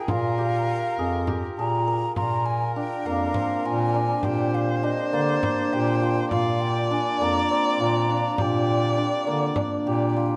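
Close, detailed microphones and light reverb frame this playful, shimmering snippet of contemporary chamber music in 7/8 at 203 eighth-note beats per minute in B-flat mixolydian, where an airy wooden flute with vibrato carries the tongued melody over a smooth, bowed viola second line, bright ringing hammered dulcimer arpeggios up front, a mellow bass clarinet bass line and a close, dry frame drum, with the harmony moving at 2.2 seconds into an alternation between Bbadd9 and Gm/Bb.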